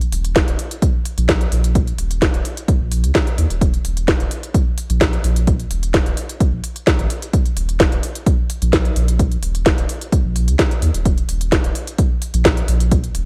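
A straight 4/4 pulse at 129 BPM drives this hypnotic, sparse minimal techno excerpt, where a punchy analog electronic kick sits up front beside a layered garage kit of cracking snare and crisp hats re-recorded in a large room, while a deep, thick, saturated sub bass ranging from Eb1 to Eb2 pumps under sidechain, all in a dry mix tuned to A4 = 445 Hz.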